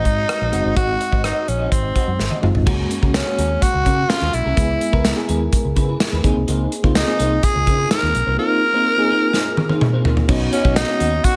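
A raspy, gritty tenor saxophone carries an up-front melody over mellow, tremolo-laden FM electric piano, a slightly broken-up, chorused electric guitar riff in the background and a round, foam-muted electric bass in this nostalgic, romantic 1980s-style pop excerpt at 126 BPM, as a polished modern drum kit with a tight kick and gated reverb plays fills at 2.2 and 9.3 seconds and a very quiet, jingly tambourine joins at 3.1 seconds, set in light small-room ambience.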